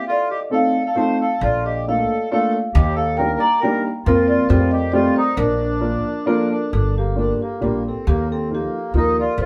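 A short, wet studio reverb and a live, one-room sound frame this bittersweet, whirling musette waltz fragment in Bb major at 135 BPM in 3/4 with a rubato feel, where a smooth marimba carries the melody over a reedy, slow-beating vintage accordion second line, a boxy, slightly detuned upright piano sits up front from 0.5 seconds, and a woody pizzicato upright bass with steel strings joins at 1.4 seconds.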